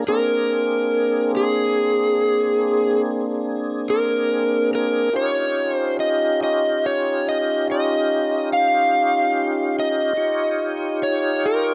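A rough home-demo sound with light reverb and a muffled top end frames this swaggering, rollicking blues, cut from a longer piece, in a slow 12/8 at 48 BPM, tuned to A4 = 442 Hz. An up-front tonewheel organ, full and lightly driven with key click, slow rotary speaker and chorus vibrato, holds sustained chords that move from Bb9 to Eb9 at 5.1 seconds. Over it, an overdriven, warm electric slide guitar, fingered and up front, carries the melody from 0.1 seconds.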